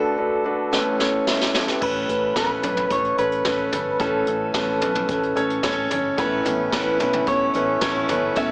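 A clear, up-front concert grand piano with deep bass and audible action noise drives this hopeful piano pop excerpt, moving from D to Aadd9 beneath a slightly broken-up, compressed electric guitar melody. A distant, roomy brush kit with dark cymbals and a boomy kick enters with a fill at 0.7 s, and a round, foam-muted electric bass joins at 1.8 s. A picked acoustic archtop guitar riff arrives at 6.2 s, all framed by light studio reverb and a small-speaker sound.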